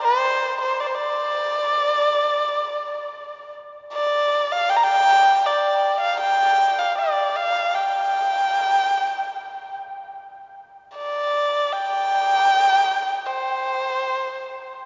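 A lone erhu carries this graceful, tender fragment of Chinese traditional music. Its tone is dark and nasal with a boxy body, and an airy quality in the bow. Played in free time, the single bowed line moves between C5 and Bb5 with soft attacks, light vibrato and gliding portamento, giving the phrases an intimate feel. The erhu sits close and up front, yet it is wrapped in a wet cathedral reverb with a 5.5-second decay, as if heard in a church or concert hall. The music shifts into a new section at 10.2 seconds and runs to about 14.9 seconds, tuned slightly above standard pitch at A4 = 441 Hz.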